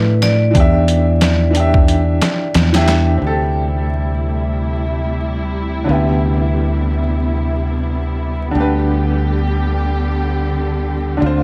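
Vinyl crackle and a light studio reverb frame this hypnotic, melancholic trip hop passage, cut from a longer piece and set in a swung 4/4 feel. A bright, ringing vibraphone struck with hard mallets carries the opening melody until 2.5 seconds, its metallic tone roughened by vintage 12-bit sampler grit and tape echo. Underneath, a clear, woody upright piano with a boxy, short sustain plays accompaniment throughout, shimmering with tremolo and tape echo, while a fingered electric bass sits up front with a warm, direct tone. A compressed, pitched-down sampler-style drum kit with a thumpy kick, medium-tuned snare and hi-hat sounds gritty through its overdrive before stopping at 3.1 seconds. From 3.2 seconds a dark, lush bowed string section enters up front, holding smooth-topped sustained chords rich with vibrato over the melancholic progression.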